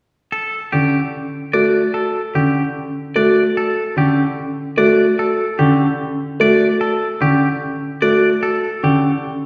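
A twangy, bright electric guitar carries the melody up front in this hypnotic, propulsive fragment of minimalist classical pattern music, entering at 0.3 seconds with clean, picked, compressed lines in its middle register. At 0.7 seconds a baby grand piano joins with a boxy, close accompaniment in its lower range, while a vibraphone played with medium hard mallets adds ringing metallic arpeggios colored by a medium motor vibrato. The vibraphone has a vintage, band-limited character that sets it apart from the crisper guitar and the rounder piano. All three parts hover over a single rootless Gsus2 harmony, giving the passage a suspended, circling quality in a steady, straight four. A wet reverb suggests a church or concert hall, and the passage breaks off at 9.1 seconds as a short cut from a longer piece.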